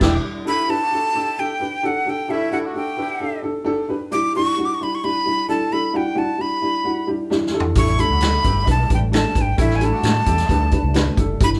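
A straight, uptempo 4/4 groove frames this joyful 1960s-style soul fragment, which opens on a short band accent before the breathy, bright jazz flute takes the melody at 0.5 seconds and carries it to the end, up front with vibrato and a crisp, chiffy attack. A dark, woody upright piano, slightly detuned and boxy with audible action noise, keeps up the accompaniment throughout, while a mellow, distant horn section with light vibrato plays a second line in two stretches. After a vintage drum kit with dark cymbals and a tight kick plays a fill at 7.3 seconds, the bass, organ and horns come back in at 7.8 seconds. The round, punchy foam-muted electric bass, the very quiet, lightly overdriven tonewheel organ with its slow rotary speaker holding sustained chords, and the kit of kick, snare, hi-hat, toms and crash drive the closing bars. Ringing, high-tuned congas and a saturated finger snap sit quietly in the background, and the whole band shares a wet small room that gives the take a warm, live feel over harmony moving between A7sus4 and Em7/G.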